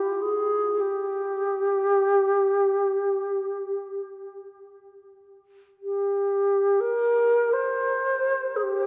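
Unmeasured and free in time, this short fragment of a longer meditative world piece drifts rather than pulses, setting a spacious, haunting mood. A single wooden-headed alto flute carries the whole 8.9 seconds alone, moving within a narrow span between G4 and C5. Its tone is airy and warm, with vibrato and tongued notes, and a slightly unsteady quality that gives the line a human, searching feel. The flute sits up front yet carries a distant character, and a delay on it adds trailing echoes. A wet cathedral reverb with a long 4.9-second decay surrounds it, and the dark, warm production, tuned to A4 = 445 Hz, lends the sound a dim, enveloping glow.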